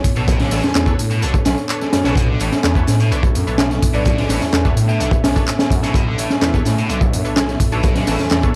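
A crunchy, gritty breakbeat kit sits up front in this funky, swaggering breaks excerpt, its tight kick and high-tuned snare saturated and rolled off on top, while a layered electronic house kit adds tape-warm handclaps, hi-hat and tambourine underneath. Set at 127 BPM in B minor and resting on a single Bm9 chord, the groove is anchored by a thick, swirling detuned saw bass with a phaser, entering at 0.2 s. At that same moment a bright, overdriven, double-tracked electric guitar riff arrives in a low register, roughened with 12-bit sampler grit and tape echo, alongside a nasal, band-passed chord stab with chorus that plucks quickly in the background. A deep, moody analog pad holds sustained chords from the start, its chorus and sidechain pumping giving the backdrop a breathing motion. Briefly, from 3.9 to 5.0 s, a woody marimba melody peeks through a telephone filter and tape echo before vanishing. 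The whole production is dark with light reverb, a short cut from a longer piece.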